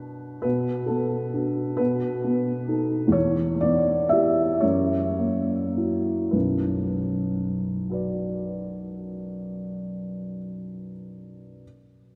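A woody, open upright piano sits up front in this brooding, bittersweet romantic character piece for solo piano in B minor. It moves in a slow, rubato 6/8 at roughly 32-46 BPM, slowing through its first 6.3 seconds as the harmony passes from Bm through B7, Em and F#7 before settling back on Bm at 6.3 seconds, where a second passage begins. The piano ranges from deep bass to the middle treble and is bathed in a long, wet cathedral reverb, in this short passage cut from a longer piece.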